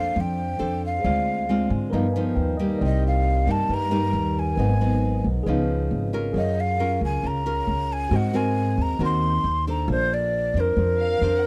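A straight 4/4 bossa nova groove at 136 BPM sets a relaxed, romantic mood in this short excerpt cut from a longer piece. An up-front upright bass, woody and dark, plucks the low end beneath a fingerpicked nylon-string guitar whose full-bodied classical tone carries the accompaniment. A breathy jazz flute with vibrato and a hollow, mellow character sings the tongued melody, while a worn, slightly out-of-tune tine electric piano sits in the background, heard through a combo amp and stepping forward with a fill from 1.5 to 2.8 seconds. The harmony drifts from Bbmaj9 through Cm7, Abm7 and Gbmaj7 before resolving back to Bbmaj9. At 11.0 seconds a lush, smooth bowed violin section enters with a second line just as the clip ends. The sound is dry and close, in the manner of a 1970s studio recording.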